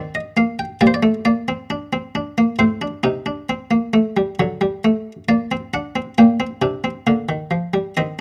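A buff-stop harpsichord, muted and lute-like in its French-style plucked tone, plays alone and up front from 0.0 to 8.2 seconds in this short fragment of a solemn, serious baroque-style three-part fugue at 67 BPM in a straight 4/4. Its dry, mid-forward sound spans from A2 to G5, and the harmony moves through C minor, G minor and A diminished to a D7 before settling back on G minor. Close, detailed miking captures the instrument with only a light touch of reverb around it.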